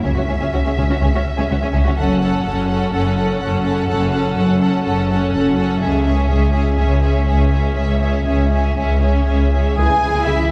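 In a concert hall with a wet, lingering reverb heard from further back in the room, this short cinematic excerpt from a longer piece unfolds as a determined, adventurous build-up in straight 4/4 over C# minor and F# minor harmony. A violin section carries the high melody with a focused, smooth top and lush vibrato, while a second violin line moves beneath it in an even, bowed texture. A rich chamber viola section fills out the accompaniment, and the low end rests on a cello section with a soft attack and expressive, close tone, joined by a woody double bass section. Near the end, at 9.8 s, a bright solo oboe and a very quiet, hollow silver flute add brief second lines. A mellow, distant French horn section holds sustained chords in the background for a moment before the excerpt cuts off at 10.5 s.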